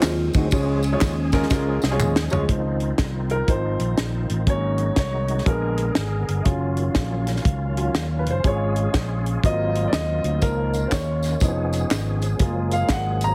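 Hopeful and reverent, this uptempo gospel piece, cut from a longer work, rides a swung 4/4 feel with a light small-room ambience and a heavily compressed, radio-like sound. A breathy, mellow bass ocarina with a clay, straight tone carries the opening melody from the background until 2.3 seconds, over handclaps and tambourine and a tight funk drum kit whose high-tuned snare and tight kick sit up front. A drum fill leads into the second section, where the woody, intimate upright piano takes a solo with long sustain and audible action noise. A reedy, bright tonewheel organ holds sustained chords through a slow rotary speaker and chorus vibrato, with a touch of key click, while a fingered electric bass adds an amped low end. At 2.5 seconds a dark, distant French horn section enters very quietly with sustained chords and light vibrato, and the handclaps and tambourine return at 10.4 seconds as the harmony moves through rich extended chords such as Dbmaj9, Bb7b9 and Gbmaj9.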